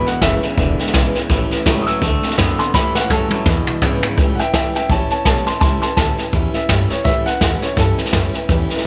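Upbeat and retro, this swung rockabilly fragment, cut from a longer piece, rides a lively shuffle feel in four. A clear, vintage upright piano carries the melody with long sustain and takes a solo through the opening section, which ends at 4.2 seconds. Alongside it, a twangy, clean electric guitar plays a low riff that stops at that same point, while a bright, full-bodied steel-string acoustic guitar picks out accompaniment with audible finger squeak. Underneath, a thumpy, dark pizzicato upright bass with gut strings sits in the background, and an up-front brushed drum kit with a boomy kick and a rolled-off top drives the groove, adding a fill from 2.7 seconds that leads into the second section. Light reverb surrounds the whole band over a dominant-seventh progression built around A7.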